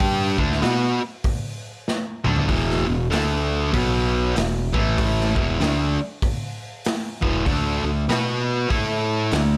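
Stoner and doom metal in E minor at 96 BPM with a swung 4/4 feel, this sludgy, heavy excerpt is cut from a longer piece and runs about 9.6 seconds. A bright, double-tracked fuzz guitar riff sits up front over a growling, overdriven fingered electric bass, moving through power chords on D, E, B and A. A raw garage drum kit with punchy kick, medium-tuned snare, toms and hi-hat sounds saturated and gritty in a pumping small room, with a drum fill at 1.9 seconds and light reverb around the whole band.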